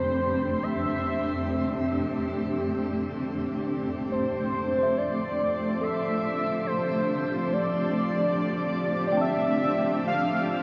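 Peaceful and serene, this free-time ambient excerpt opens with a velvety synth lead carrying a melody through chorus and delay over an up-front granular cloud pad whose blurred, evolving chords move from Fadd9 to G9sus4 at 4.1 seconds. At 4.8 seconds a tense, string-like bowed drone and a worn, slightly out-of-tune tine electric piano playing arpeggios enter, the piano sitting in the background with its own delay. A long shimmer reverb with a 7.2-second decay bathes the sound in a luminous haze.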